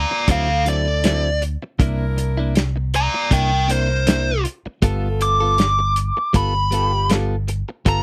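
A dry, close-sounding slice of gritty, soulful straight-eighth soul blues, where a biting, overdriven lead guitar solos up front over a dark, round fingered bass, a muffled, lo-fi soul drum kit with tight kick, stabs from a bright, compressed clean guitar recorded direct, and a mellow horn section holding sustained chords with light vibrato and octave doubling, all moving through D9, C9 and G9.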